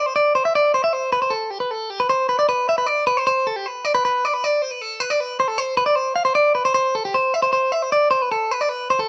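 Wistful and intricate, this short rock excerpt moves at 309 BPM counted in eighths, in a straight-feeling 9/8 metre, with tuning set to A4 = 442 Hz. A clean electric guitar takes the solo role across the whole excerpt from 0.0 to 9.1 seconds, its picked lines ranging from G4 up to F5. The tone is bright and compressed, with a scooped midrange, and it sits up front in the mix. A brief opening passage gives way at 2.1 seconds to a longer second passage that runs to the close. Light reverb and the sound of a band playing live in one room lend the guitar a natural sense of space.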